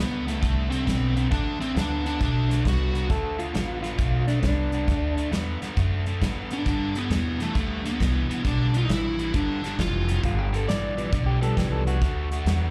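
This short cut from a longer piece sounds like a live gig heard through the venue's PA, wrapped in club reverb. It is a gritty, swaggering electric blues shuffle at 135 BPM in 4/4 with swung eighths, moving from D7 to G7 and landing on D. An up-front, woody upright bass with a thumpy pizzicato tone and a natural country drum kit in a small room, with tight kick, medium-tuned snare and hi-hat, carry the groove. Alongside them, a bright, biting overdriven guitar with slapback echo plays the riff throughout. A prominent dark, smooth overdriven lead guitar states the melody, and when it drops out at 3.1 seconds, a fingered electric guitar at the edge of break-up takes a second line with its own slapback echo. Near the close, at 11.0 seconds, a mellow, round tonewheel organ slips in briefly, clean, with chorus vibrato and a slow rotary speaker.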